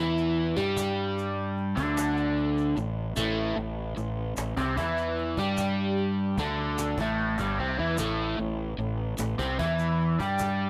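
A light studio reverb gives this short psychedelic rock cut a close, roomy sheen, with guitar and bass pushed up front and the percussion set back. The mood is hypnotic and kaleidoscopic, moving at a slow 50 BPM in dotted quarters in a straight 6/8, opening on an A5 chord. A crunchy, overdriven electric guitar carries the riff from G2 to G4, picked and double-tracked, its tone colored by a phaser. Beneath it, a fingered electric bass with round, punchy fuzz and overdrive holds the low end between G1 and G2, sounding both direct and amped. An egg shaker enters at 0.2 seconds with a grainy, bright, band-limited vintage rattle, and a woody, compressed cajon with faint snares joins at 0.4 seconds. The shaker and cajon stop at 10.6 seconds, just before guitar and bass reach the close at 10.7 seconds.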